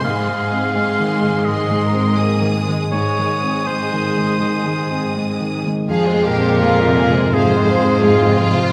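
Moving and full of longing, this short cut from a cinematic, emotional film score in F minor drifts at a rubato 83 BPM, with a lush violin section carrying the expressive melody over a second violin line, a soft, mellow felt-muted upright piano with audible action noise, a background viola section, a very quiet ringing harp in arpeggios, and a smooth cello section holding the bass. A clear oboe sings an up-front second line until 5.2 s, then the double bass section joins at 5.9 s as the harmony moves from Ab to F minor, and a bright clarinet takes a second line from 6.3 s. The ensemble sits in a wet scoring-stage reverb.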